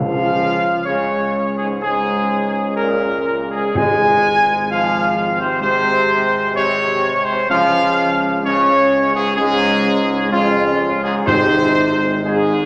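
Classical brass in a majestic, regal mood at a stately 63 BPM in Db major, with a mellow, up-front trumpet section carrying the melody over sustained chords from a clear, vintage-toned trombone section and a close-miked French horn section with light vibrato, all grounded by a soft-attacked tuba on the bass line. Round, calf-headed timpani struck with soft mallets sound through to 5.1 seconds and return at 11.3 seconds. The harmony moves between Db and Ab, and a wet scoring-stage reverb gives the ensemble a spacious sound in this short excerpt from a longer piece.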